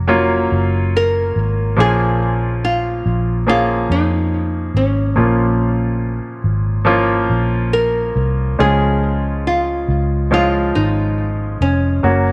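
In a straight, unhurried 4/4, this melancholic pop fragment, cut from a longer piece, opens with a concert grand piano and a muted electric bass together at 0.0 seconds. The piano accompaniment is clear and polished, with deep low notes and a short sustain, while the fingered bass sits up front with a dark, round, punchy tone, foam-muted and amped. At 1.0 seconds a small nylon-string guitar enters with the melody, fingerpicked with audible finger squeak and colored by tape echo. The harmony moves from Gb to Bb minor and later settles on Db, giving the passage an emotional, wistful cast. All three parts sit close and present in a studio space with a moderate echo chamber reverb until the excerpt ends at 12.3 seconds.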